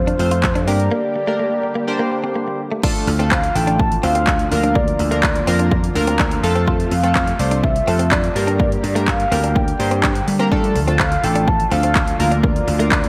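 Bright, glossy 1980s-style digital production sits in a lush hall reverb on this driving, bittersweet dance-pop excerpt in D minor at 125 BPM, moving in a straight 4/4. An up-front analog drum machine with a tape-warm, punchy kick drives the groove with hi-hat, handclaps and crash cymbal, all bathed in gated reverb. An amped vintage slap bass pumps through sidechain compression, alongside chorused retro synth keys whose pulse-wave and sawtooth tones decay under filter sweeps and add a short fill at 6.0 seconds. A round, horn-like synth lead carries the melody with soft-attack sustain, vibrato and chorus. A very quiet, evolving supersaw swell of detuned unison sawtooths holds sustained chords through a phaser, while a clean, compressed direct guitar picks a riff in the background. After a break starting at 0.9 seconds, the harmony settles at 2.8 seconds into a looping Dm, Bb/D, F and Gm progression.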